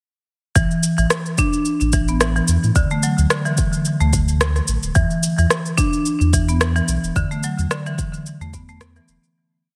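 A lightly swung sixteenth-note groove in four drives this short organic downtempo piece, built on a deep, soft electronic kick and an up-front, tape-toned layer of electronic shaker and rim click. A round, sine-toned sub bass with tube saturation and sidechain pumping plays a syncopated riff. Above it, a woody, bright marimba struck with hard mallets repeats a dry, close-miked 32-step arpeggio sequence through digital delay over A5 and Dsus2 harmony. The mood is warm and mystical, with the whole mix heavily compressed into a radio-like sound with light reverb, and it fades out from 6.4 seconds.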